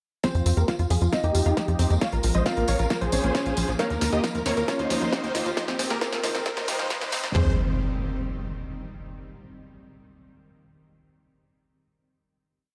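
From 0.2 seconds a driving, euphoric uplifting trance build surges in, with a huge, detuned supersaw lead spinning a sixteenth-note riff in thirds and sixths through cassette tape, a filter sweep and digital delay, doubled by a faint unison pluck and joined by a clear grand piano riff in octaves, over a punchy, overdriven big-room kit with four-on-the-floor kick, a drum-machine backbeat with hats, jingly tambourine sixteenths, a nasal rolling sequencer bass, a round analog pluck looping a six-step sequence against the bar, and, from 1.9 seconds, a shimmering, warbling pad, all bathed in a lush hall reverb and a dark production, while from 2.2 seconds a riser and impact carry the track into a final Fm chord at 7.3 seconds.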